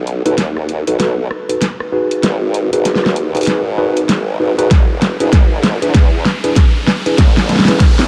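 A dreamy mix soaked in a huge ambient reverb frames this short, funky and gritty glitch hop build-up at 97 BPM in 4/4, swung on the sixteenths and set in G# phrygian. A formant-sweep wobble bass carries the low end from the start, a detuned sawtooth-and-sine tone that wobbles through a formant filter, with a fast attack, sustained notes, compression and chorus. Over it, a worn, slightly out-of-tune tine electric piano plays stabs through overdrive, sidechain pumping, a low-pass filter and analog delay, sounding as if heard through built-in speakers. A layered pop drum kit sits up front throughout, with a fat snare, rim clicks and warm hi-hats driving a drum fill across the whole passage. An electronic riser creeps in from the background at 1.9 seconds, and a punchy, up-front electronic kick drum lands at 4.7 seconds. The chords move from B7 to G#m7, then E7, closing on A5 as the build-up is cut from the longer piece.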